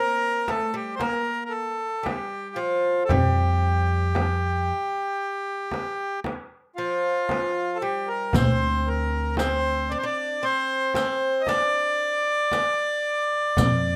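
A reedy, dry-tuned accordion sits close and up front, carrying the melody in this hypnotic, longing excerpt from a longer Arabic maqam ensemble piece in D minor, moving in a straight 10/8 at 115 BPM with tuning set to A4 = 444 Hz. Beneath it a bright, fretless oud with doubled strings plucks a second line, while a crisp metal-shelled darbuka and a deep, large frame drum set the percussion. A woody upright bass on steel strings joins at 3.1 seconds, and a distant riq adds bright jingles from 8.4 seconds, all in a rough home demo mix with light reverb.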